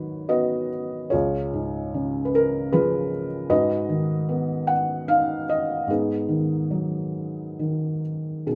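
A soft, intimate felt-muted upright piano sits up front in a moderate studio ambience, its mellow tone and short sustain lending this brief classical fragment, cut from a longer piece, a reflective, melancholic mood. Playing alone for the full 8.6 seconds in G# dorian and tuned to A4 = 441 Hz, the piano moves through G#m7, C# and back to G#m7 in a lyrical 3/4 at a rubato 65-78 BPM, spanning C#2 to F#5.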